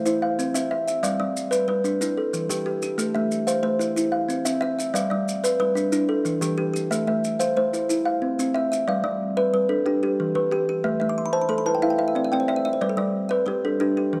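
Two kalimbas open together in interlocking arpeggios, joined at once by a soft shake of maracas, setting up a rippling, hypnotic cycle in the southern African traditional style, moving in a straight 12/8. The louder kalimba sits up front with a woody, hollow-box tone and a ringing thumb pluck. The second, lower in the mix but reaching higher, has a brighter thumbnail attack and a close, dry, full sound. The maracas add a grainy, mellow texture from a small room, then drop out at 8.9 seconds as the piece moves into a new section. The harmony circles steadily through C, G, Em and Am, and a kalimba fill runs from 10.9 to 12.8 seconds before this passage, cut from a longer piece, breaks off, all under a light studio reverb.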